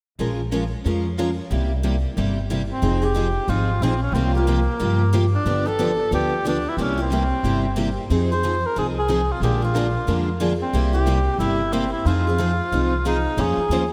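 A bittersweet, swinging jazz manouche passage in F minor at 182 BPM opens at 0.2 seconds with two picked steel-string acoustic guitars, one bright and boxy, the other full-bodied with fresh strings, finger squeak and analog chorus, over a woody, thumpy upright bass on gut strings, before a mellow cor anglais with vibrato and delay takes the solo melody at 2.7 seconds, all soaked in a dreamy, lush hall reverb.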